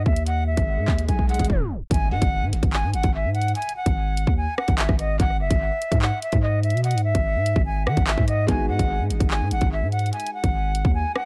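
A bright, reedy concert flute with tape echo and a deep, long 808-style bass open this tense, menacing drill excerpt at 146 BPM in a half-time feel in G# minor, joined by an up-front electronic drum kit with a hard-clipped kick, woody snare, bright hats, handclaps and rim clicks, while a background swell, a drum fill and a tape stop lead into an impact at 1.9 seconds, and a soft, felt-muted upright piano with audible action noise and tape echo enters at 8.5 seconds in an echo-heavy digital ambience.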